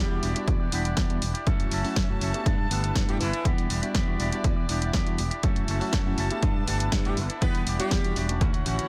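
A dry cut from a longer filtered disco house track, this funky, groovy passage moves at 121 BPM in a straight 4/4, set in E dorian with its tuning pitched at A4 = 445 Hz. An analog drum machine's hi-hat and snare set the groove, with the hats pumping, and a punchy electronic kick soon lands up front to anchor it, while a growly, fingered electric bass carries the low end. A twangy, picked electric guitar runs a riff through an envelope filter with a layer of vintage 12-bit sampler grit, and a tine electric piano adds clean, phased accompaniment that sounds as if heard through its built-in speakers. Alongside them, a dark violin section holds smooth, softly bowed chords with light vibrato, and a tight horn section doubled in octaves, trailed by a dub echo, plays the melody from the start until 3.5 seconds, returning at 7.1 seconds. Nearly every part breathes with sidechain pumping as the harmony cycles through Em7, F#m7 and G69.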